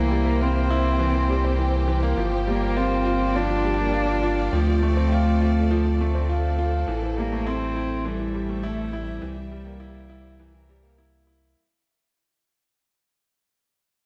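Piano and strings electronica at 102 BPM in a straight 4/4, moving and intimate, where a deep, round sub bass and an up-front, polished baby grand piano riff play alongside a distant, woody solo cello melody and smooth, vibrato-rich sustained chords from a bowed string section, bathed in a moderate echo-chamber reverb over a drop that runs the whole way through the chords C7, Gm7, Dm7 and Am7, with a fade-out beginning at 5.3 seconds in this cut from a longer piece.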